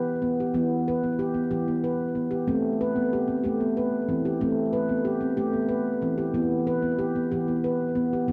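World meditative tuned percussion in E minor at a slow 62 BPM in 6/8, this hypnotic, gentle excerpt features a solo handpan, played with soft fingertips and placed up front, whose ringing, mellow stainless-steel tones carry delay through an Em to Am and back to Em progression, set in a moderate concert-hall reverb within a dark production.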